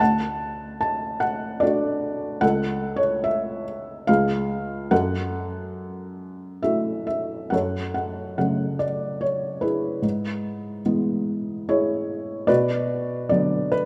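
A felt-muted upright piano sits up front with a mellow, intimate tone, short sustain and audible action noise, playing solo across this dark, wistful classical excerpt in F# minor. The lyrical line moves in a rubato 3/4 at around 67-76 BPM, with chords passing from D through F#m7, and the opening phrase returns at 7.5 s, drifting over E/G# before settling on Bm. A moderate concert hall reverb surrounds the piano with a gentle sense of space.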